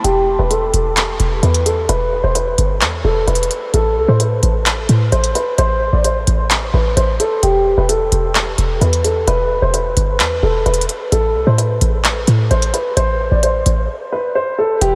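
A dark, mellow concert grand piano carries an eerie melody through a low-pass filter sweep and delay over a punchy, tight 808-style bass and a crisp-hatted trap kit with handclaps, set in a half-time trap groove at 130 BPM in E minor moving between E5 and Am, bathed in huge dreamy reverb, with a break at 13.9 seconds before a very quiet bowed string section slips in at 14.8 seconds as this piece cut from a longer work ends.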